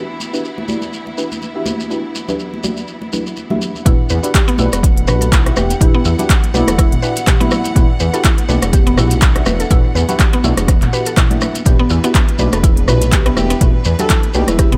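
A punchy, up-front electronic kick anchors this driving afro house piece at 123 BPM in E minor, landing at 3.9 s alongside a deep house kit of smooth hats, handclaps, rim clicks and toms, a deep, rumbling detuned saw bass under sidechain pumping, and a woody, round mallet-like synth pluck playing arpeggios through chorus and dub echo. From the start, clear bowed strings with vintage 12-bit sampler grit sustain chords on an opening Em9, joined by soft, dark chord stabs with chorus and dub echo, high-tuned congas set distant in a large room, and a close, grainy shekere, over a swung 16th feel. An expressive, evolving synth lead with lush chorus and vibrato sings in the background from 4.6 s and returns at 12.4 s, in a dry mix.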